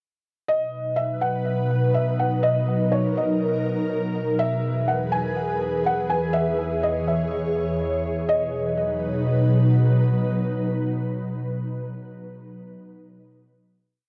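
This hip hop piece sits in a half-time feel at 123 BPM in 4/4, an atmospheric cloud-rap sketch in B major with a dreamy, floating mood. A felt-muted upright piano enters at 0.5 seconds with a sparse, looping melody in its upper register, repeated like a sampled loop and carrying a soft, intimate tone with audible action noise and a tape echo trailing behind it. Just after, an ethereal, airy pad fills in sustained chords, its detuned sawtooth and triangle layers with a breath of noise made hazy by ensemble chorus, built-in reverb and cassette tape coloring, sitting up front with a slow attack and long release. The harmony moves from B to E and back to B, and the piano drops out at 9.7 seconds, leaving the pad to hold the final chord until 12.3 seconds. The home cassette recording keeps the room dry and close, so the pad's own reverb supplies most of the haze.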